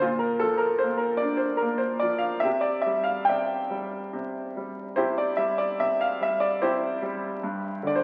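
A clear grand piano opens at 0.0 seconds on a Bb chord, heard through the crackle of a very old 78 rpm record. This is calm, lyrical solo classical piano in 3/4 at about 73 BPM, played with rubato so the beats fall unevenly and the phrasing breathes freely. The piano sits up front and spans G2 to G5; its tone is worn, with short sustain, yet the mood stays warm. A wet recital hall reverb surrounds it, giving the notes a sense of space. The harmony moves to Cadd9 at 2.4 seconds and settles on G5 at 7.4 seconds, in a brief fragment cut from a longer piece.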